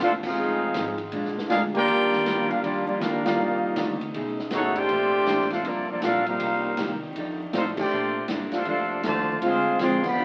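A tight, up-front trumpet section carries the melody in this brassy, joyful big band swing excerpt in Bb major, moving at 159 BPM with a swing feel. Close behind, the trombone section plays a second line with a light vibrato and soft attack, while a dark, very quiet saxophone section holds sustained chords. A clean, picked hollow-body electric guitar and a woody pizzicato upright bass sit in the background, the bass reaching down to F1. The drum kit, with its punchy kick, medium-tuned snare, ride, hi-hat and crash, enters at 0.2 seconds, and the full band hits accents at 0.2, 3.2 and 7.7 seconds over jazz harmony such as Ebmaj9, Gm11 and F13. A small, wet room and the crackle of a very old 78 rpm record give the sound an aged, vintage character.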